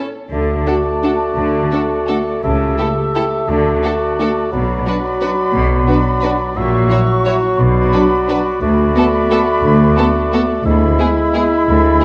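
Classical orchestral ballroom waltz in D major at 174 BPM, elegant and sweeping with rubato and uneven beats, where a rich, bowed violin section carries the melody alongside a pure flute section, a very quiet second violin line, a clear solo oboe, a mellow clarinet and bassoon, a lush background viola section, a vibrato-laden cello section and an up-front double bass section, while a dark, distant French horn section holds sustained chords from 0.7 s, all set in a moderate scoring-stage reverb and colored by worn, warbling cassette tape with drifting pitch.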